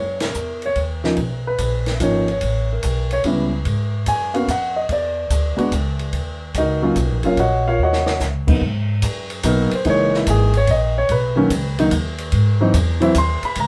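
A grand piano carrying the melody and a woody, pizzicato upright bass open this smoky, moody jazz trio excerpt with a band accent, and a compact cocktail kit with dark cymbals, a high-tuned snare and a tight kick joins at 0.2 seconds. The swung waltz moves at 145 BPM in Eb minor, and a brief drum fill carries it into G# minor at 8.6 seconds, where the harmony turns through rich extended chords. The intimate piano sits up front with audible action noise, while the dry, natural drums stay low beneath it in a moderate room that gives the feel of a band playing live together.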